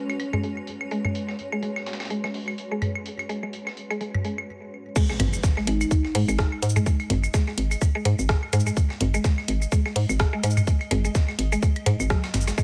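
Minimal techno at 126 BPM in G# minor, quirky and hypnotic, with a swung 4/4 feel, cut from a longer piece. It opens on a blurred, cloudy granular pad with built-in reverb and a tense, swarming drone in the background, both pumping to a sidechain, while a gritty, tape-warm breakbeat kit plays hi-hat and snare through filters. Electronic claves and toms with digital delay sit alongside a woody, round mallet-like synth pluck riff, bright with lush chorus and delay, over a G#m7 chord. After the drone drops out at 4.5 seconds and a brief stop, the drop lands at 5.0 seconds on a G#5 chord with a tight, up-front electronic kick, a garage kit adding cabasa, crash, bright hats and rim click, and a very quiet electronic impact. A hollow, bouncy FM bass knocks up front from 5.2 seconds, and a mellow marimba with soft mallets sounds a single D#4 note in the background, all set in a digital ambience.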